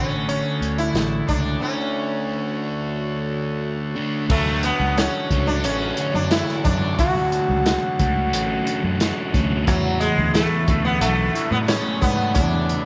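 A buzzing, shimmering sitar sits up front carrying the melody, its plucked notes trailed by a slapback echo in this hypnotic, trippy slice of psychedelic rock cut from a longer piece. Beneath it, a double-tracked fuzz guitar grinds out a dark, distorted riff colored by a phaser, while a fingered electric bass holds down the low end with a round, foam-muted tone. A crunchy breakbeat kit enters at 0.3 seconds, gritty and saturated with a rolled-off top, a tight kick and dark cymbals, and a break runs from 1.6 to 4.3 seconds. An overdriven combo organ hums sustained chords in the background, moving from Dmaj7 to E7sus4 at 9.7 seconds, and congas played with soft hands slip in at 4.5 seconds, barely audible. A moderate spring reverb gives the whole mix a lingering, vintage haze.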